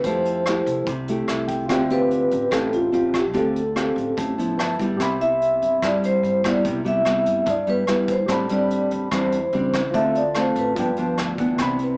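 Breezy and sophisticated, this bossa nova passage cut from a longer piece features a mellow, ringing vibraphone melody played with soft mallets and medium motor vibrato, close-miked alongside an up-front, thumb-plucked classical nylon-string guitar, while a natural-sounding grand piano with deep bass adds a brief fill at 1.1 seconds, a woody pizzicato upright bass on gut strings thumps underneath, and a distant, roomy brush kit with tight kick, hi-hat and rim click keeps time, all over lush extended chords moving from Fmaj9 through Dm11 and G13 to Cmaj7, set in a small room and heard through a small-speaker sound.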